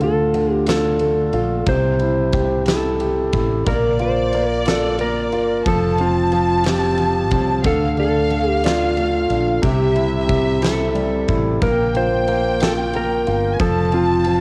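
This aching, melancholic pop ballad in six-eight opens with a clean lap steel guitar carrying the melody, its fingered slide tone compressed and shaped by volume swells, with a cassette-tape coloring. Beneath it, a concert grand piano plays the accompaniment up front, intimate and polished, with long sustain, deep bass and audible action noise. A dark, round fretless electric bass sits low through an analog chorus, while a huge arena drum kit, also run through cassette tape, supplies a punchy kick, fat snare and ride cymbal in a big room. At 3.7 seconds a studio violin section enters with a lush, smooth second line above the steel, bowed with vibrato. The D minor progression moves slowly at 60 BPM through Dm, C, Bbadd9 and F, and the light reverb and home-cassette sound give this excerpt a close, worn intimacy.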